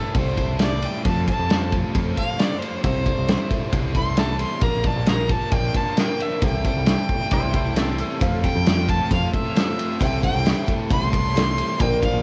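Jangly and open-road, this folk rock and heartland rock excerpt rides a straight 4/4 groove, with a clear, focused fiddle carrying a solo melody with light vibrato and tape echo across the full 12.2 seconds over a shimmering, octave-doubled picked twelve-string acoustic guitar and a biting, double-tracked overdriven guitar riff in the background. A round, punchy picked electric bass anchors the low end, while a loose indie drum kit with a punchy kick, dark ride cymbal and medium-tuned snare sits up front in a pumping small room with a cassette tape grit, the harmony moving among C6, F and Bbadd9 chords. At 6.4 seconds a mellow grand piano with audible action noise and a grainy egg shaker enter very quietly, and a twangy, compressed lap steel slide line appears briefly at 7.3 seconds, all wrapped in spring reverb with a homemade cassette character.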